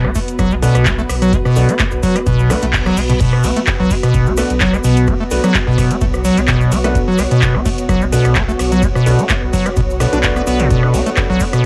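A gritty, driving acid house excerpt in B minor opens at once with a squelchy, resonant square-wave acid bass riff, up front and saturated through tube drive, lush chorus, tape echo and cassette grit, sitting over a round sine sub bass that pumps with the sidechain. A booming analog drum machine with metallic hats, handclaps, rim clicks, ride and crash cymbals holds the 4/4 groove at 128 BPM with a light 16th-note swing, joined at 0.2 seconds by a deep electronic kick, both tape-warmed and re-recorded in a large room. Beneath them a dark, detuned granular cloud pad drifts and blurs in its own reverb, breathing with the sidechain. From 0.6 seconds a concert grand piano adds intimate stabs in the background, with audible action noise, long sustain and tape echo, while a grainy, bright cabasa ticks quietly from a small room. A brief electronic reverse cymbal rises at 2.5 seconds, and the whole passage rests on a single Bm7 chord with the character of a home cassette recording and light reverb.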